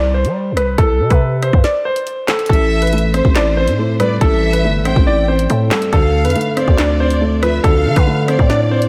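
Ominous and menacing, this drill cut from a longer hip hop piece moves at 140 BPM in 4/4 with a half-time feel, in A minor. A warm concert grand piano carries the melody through a low-pass filter and delay, its short-sustained notes sitting up front, while a growling, buzzy 808-style bass with a fast attack and decaying tail anchors the low end from the first moment. The electronic drill kit arrives at 0.2 s with a hard-clipped kick, woody snare, warm hats, handclaps and rim clicks, pushed forward in the mix, and a break falls between 1.6 and 2.5 s. At 2.5 s a rich, distant violin section adds an expressive, vibrato-laden second line with delay, joined by a felt-muted upright piano playing dark, intimate accompaniment through a low-pass filter. The chords move from C5 to Am7 and then Dm7, and a lush hall reverb with studio ambience soaks the whole in a dreamy haze.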